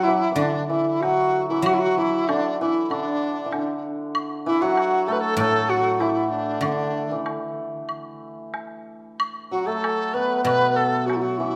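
Heard in a moderate recital hall reverb, this graceful, pastoral excerpt of Chinese traditional chamber music flows in a rubato 4/4. A reedy large dizi carries the melody up front, its buzzing membrane, tongued notes and vibrato giving a pure bamboo tone, while a shimmering, ringing hammered dulcimer plays a second line beneath it and a bright guzheng, played with fingerpicks, adds silvery accompaniment. A close, dry woodblock enters at 0.4 s and supplies the percussion until 11.2 s.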